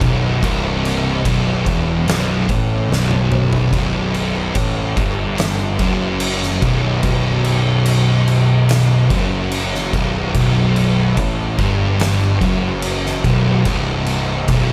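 An oversized, low-tuned acoustic drum kit sits up front in this heavy, hypnotic stoner and doom metal excerpt, its boomy kick, fat snare and dark cymbals saturated and gritty inside a bright stone room that pumps around the hits. At a slow 72 BPM in straight 4/4, the kit drives the whole 14.7 seconds, with a drum fill from 2.9 to 3.7 seconds. Beneath it, an overdriven fuzz bass, recorded direct and amped, plays punchy, warm low notes that anchor the riff. Two thick fuzz guitars sit in the background, one dark and one warm, both distorted and picked as they grind through the low riff, which opens on a B5 chord. A double-tracked fuzz guitar sits very quiet underneath, thickening the wall of sound, while a small room ambience wraps around the ensemble.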